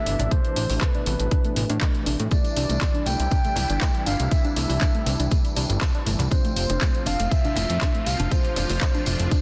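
A punchy, up-front electronic kick drives this emotional progressive house excerpt, joined by a fat, saturated analog bass that pumps to the sidechain, a detuned supersaw swell under a filter sweep, a round, chorused octave-layered lead with vibrato carrying the melody over soft, pumping dark pluck arpeggios, pop kit handclaps and hi-hats, very quiet dry congas and bongos, and a jingly, distant tambourine that enters at 2.3 s, all in a dense, heavily limited mix.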